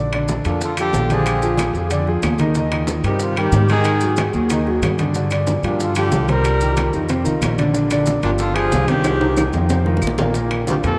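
This fragment sits in a vast, echoing space, with a heavy cathedral reverb washing over the band. It is danceable, sophisticated Afro-Cuban jazz in a straight four, moving through chords such as Bbmaj7, Eb, Cm7 and G7sus4. An intimate concert grand piano with audible action noise and deep bass sits up front beside a pizzicato upright bass with steel strings and a woody tone. From 0.5 seconds a mellow, breathy trumpet carries the melody with scooped notes and a smooth top, while a distant, warm baritone saxophone plays a roomy second line in subtone, with light vibrato, a soft attack and scooped notes. The percussion is mostly quiet: bright, low-tuned congas played with soft hands, round bongos, ringing metal-shell timbales in the background, very quiet claves and grainy vintage maracas, with a drum fill arriving at 9.0 seconds.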